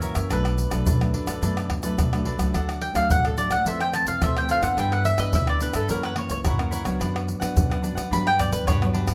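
Samba and choro with a sunny, festive mood, this short excerpt moves at 108 BPM in a straight 4/4 in D major. A picked mandolin, its doubled strings ringing woody and up front, carries the melody and takes a solo from 2.5 seconds to the end. Beneath it, a crisp picked cavaquinho and a fingerpicked nylon-string guitar, full-bodied with fresh strings and a deep classical tone, supply the accompaniment, while a pizzicato upright bass adds a thumpy line from its steel strings. Egg shaker, pandeiro, tamborim and a tight surdo sit close, dry and up front, played with soft hands. The harmony travels from Bm7 through D, Fmaj7, G6 and F#7 before settling on Bm/F# and Gmaj7, all set in a moderate large-studio reverb.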